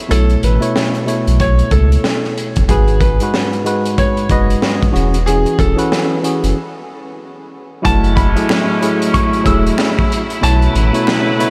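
A swung, crunchy breakbeat kit with a punchy kick and high-tuned snare drives this moody, reflective boom-bap hip-hop excerpt, sitting up front beside a deep, thick sub bass and a worn, slightly out-of-tune tine electric piano pushed through overdrive and cassette tape. A brilliant, woody upright piano carries the melody over chords moving from B9sus4 through G#m7 and E69; after a break at 6.6 seconds, vibrato-rich jazz horn stabs and lush bowed strings in the background arrive around 7.8 seconds, and a very quiet, distant finger snap joins at 8.5 seconds. The mix is dreamy and soaked in huge ambient reverb, with diffuse delay trailing the piano and horns.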